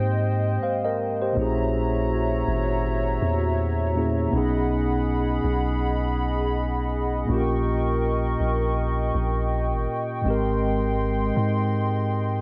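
An 81 BPM groove in 4/4 with a gentle sixteenth-note swing sets this romantic, tender contemporary R&B excerpt, where a mellow tine electric piano carries the accompaniment up front alongside a hollow, flute-like soft pad with chorus holding sustained chords. Underneath, a deep, sine-like 808-style bass sustains long decaying notes, all three parts playing throughout the 12.4 seconds. The chords move from Abmaj7 through Gb7, B6 and Eb7/Bb before returning to Abmaj7, set in light reverb with a digital ambience.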